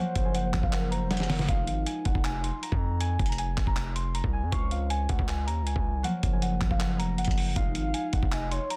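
A dense, heavily limited mix in a digital ambience carries this melancholic, hard-hitting trap excerpt at 158 BPM in half-time, in F phrygian, moving through Gbmaj7, Fm7 and Dbmaj7. Muted, felt-like synth keys with chorus and delay carry a soft, dark melody over a mellow, ringing concert harp accompaniment, while a smooth, gliding portamento lead with vibrato adds a second line at the start and again from 7.6 seconds. Up front, a gritty sampler-style drum kit with a thumpy kick, handclaps, hi-hat and snare, re-recorded in a large room, pushes through a fill at 1.1 seconds, and a saturated, aggressive 808-style bass hits heavy and distorted beneath it.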